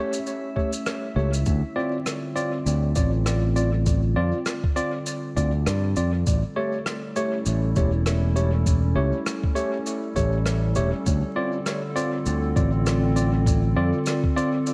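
A warbling, nostalgic pad and a worn, slightly out-of-tune tine electric piano with dub echo open this meditative, deep ambient dub excerpt alongside a glassy, drifting harmonics texture that stops at 1.5 seconds, while a brushed shaker and rim click with its own dub echo, a muffled, pitched-down electronic kick and, from 1.2 seconds, a punchy, up-front fingered electric bass with tube saturation carry a swung groove over A7 and Dm7 chords beneath a layer of vinyl crackle.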